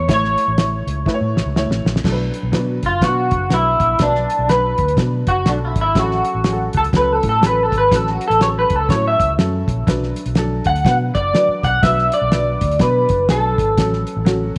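Uptempo 1960s-style soul with an urgent, driving swing, cut from a longer piece in which a drum fill from 1.1 to 2.0 seconds leads into a clean electric guitar solo that runs from 2.0 seconds to the end. The bright, twangy guitar, slightly broken-up through a small old amp with analog chorus, sits up front over a round, punchy, foam-muted bass and a dry, cloth-damped drum kit with a fat snare, tight kick and dark cymbals. A worn, woody upright piano with audible action noise and a slightly detuned, boxy tone fills out the accompaniment, all set in a small room with light reverb.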